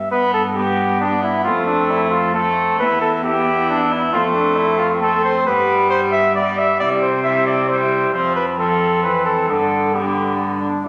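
Stately and courtly, this short cut from a longer piece is a renaissance-style consort dance in 3/4 at 134 BPM, moving with a straight feel in G mixolydian. A cornet carries the melody from the very start, sitting up front with a warm tone and light vibrato, while a dark, distant cor anglais joins at 0.1 seconds on a second line, its sound roomy and touched with light vibrato too. A single bowed viola fills in the accompaniment with a rich, reedy gut-string tone in period style, placed up front with light vibrato of its own. Beneath them, one bowed cello plays the bass with a nasal, gut-string voice that sounds distant. The harmony circles through G, F, Em and C before settling back on G near 9.5 seconds. Captured on a phone in a wet recital hall with club reverb and compression, the sound is spacious and squeezed.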